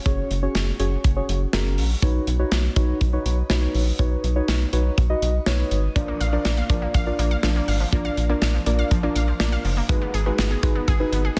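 A tight, up-front acoustic drum kit, a rubbery, hollow square bass and muted, felt-like synth keys washed in chorus and shimmer reverb open this wistful, nostalgic synth-pop excerpt at 122 BPM, moving from F#sus2 through Badd9 to A# and G#m7, with a bright, detuned unison pluck joining at 6.0 s to spin arpeggios through digital delay and shimmer reverb over a small room and a dense, heavily limited master.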